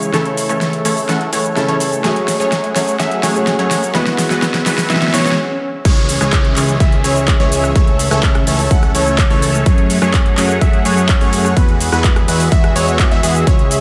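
A punchy, overdriven electronic kick drum sits up front from 5.9 s, landing the drop of this euphoric, powerful festival progressive house excerpt in straight 4/4. Before that, a build-up gathers over a drum fill from the overdriven big-room kit, with its huge snare, metallic hats, crash, handclaps, rim click and shaker. Filter sweeps move through the detuned sawtooth supersaw stab riff, with its phaser and cassette tape colour, and through the thick unison pad, before a brief stop. A soft, felt-muted upright piano with audible action noise plays intimate accompaniment only until the drop, while a concert grand with deep bass runs arpeggios in the background. Beneath them sits a fat, nasal analog bass with tube saturation, and the chorused pad holds sustained chords over A/C#, F#madd9, Eadd9 and C#m. Both pianos, the pad, the stab and the bass pump with sidechain, while dub echo trails the pianos and stab. 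Very quiet riser, swell and downlifter effects drift through the middle, all within a moderate hall reverb.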